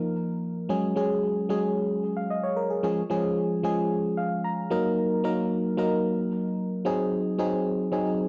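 A cassette-recorded home take, steeped in a wet spring reverb and tape character, presents a moody, urgent pop fragment cut from a longer piece. A lone FM electric piano sits up front, its glassy, bell-like attack decaying into a warbling, vintage tone with a noise layer, thickened by chorus and analog delay. It moves through Ebsus2, Gbsus2, Db/F, Ebm and Ab7, with a brief fill from 3.9 to 5.0 seconds before the clip ends at 8.3 seconds.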